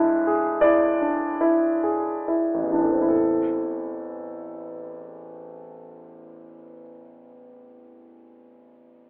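Heard through a thin telephone-like band yet carrying a moderate recital-hall reverb, this brief excerpt from a romantic classical nocturne features a warm, natural grand piano played solo and up front, spanning A1 to E5 in A minor and 6/8 at a very slow 22-29 BPM with a rubato feel, slowing over its opening 3.1 seconds on an E7/A chord before settling onto A minor, in a yearning, mournful mood, with the piano sounding until 9.1 seconds.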